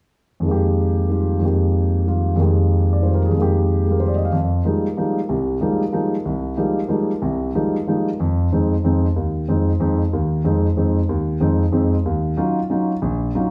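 A lone grand piano opens a cool, intense jazz waltz in F minor on an Fm11 chord, swinging briskly at 186 BPM in 3/4 and reaching from deep bass notes into the upper middle register. The piano sits up front with an intimate, natural tone, long sustain and audible action noise, set in the wet reverb of a large studio room. The harmony moves to Ab at 8.2 seconds and settles on Ebm9 at 12.1 seconds before this cut from a longer piece ends at 13.5 seconds.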